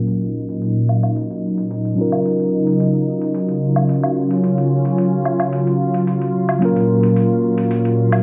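A mellow tine electric piano and a lush, detuned unison pad open this blissful sunset chillout excerpt together, settling into a relaxed, straight 110 BPM groove in 4/4. The electric piano plays clean, direct accompaniment touched with delay, while the pad holds thick, airy sustained chords with a soft attack, its sawtooth and square-wave layers, noise layer and chorus giving it a bright, up-front presence. An electronic hi-hat and woodblock enter at 0.1 s, sampler-style and compressed with a gritty, tape-flavored edge, sitting quietly beneath the keys under low-pass filtering. Filter sweeps run across the drums and the pad throughout the 8.2 seconds. The harmony moves from F#maj7 to D#m9 at 2.0 s and back to F#maj7 at 6.6 s. A wet recital-hall reverb with digital ambience surrounds the mix, and its softened top end gives the whole scene a hazy, warm glow.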